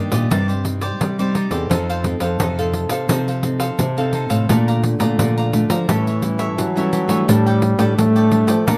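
A jingly, dry pandeiro struck with hard hands drives a straight 4/4 samba and choro groove at 86 BPM, lively and playful, in this short cut from a longer piece. A bright, crisp picked cavaquinho and an up-front fingerpicked nylon-string guitar with fresh strings and audible finger squeak share the accompaniment over a second classical nylon-string guitar carrying the bass line, moving from Cmadd9/G through F7, Bbmaj7 and A7 to Dsus4/A. At 4.5 seconds a warm, present trombone enters with a jazz-style second line, shaded by light vibrato and scooped notes, all captured with close, detailed microphones, light reverb and lossy compression artefacts.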